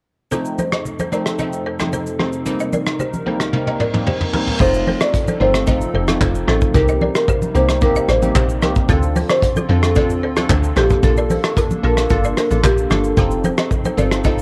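A punchy, up-front brush drum kit drives this joyful, breezy afrobeats excerpt, joined by glassy wavetable plucks, a buzzing balafon riff with analog delay, low-tuned congas and an airy, hollow pad, all lightly wrapped in cassette-tape character and small-room reverb. A drum fill from 3.5 seconds and an electronic reverse cymbal at 3.8 seconds lead into the second section at 4.6 seconds, where a deep, round log drum bass enters and a woody, smooth marimba carries the melody through to 13.0 seconds.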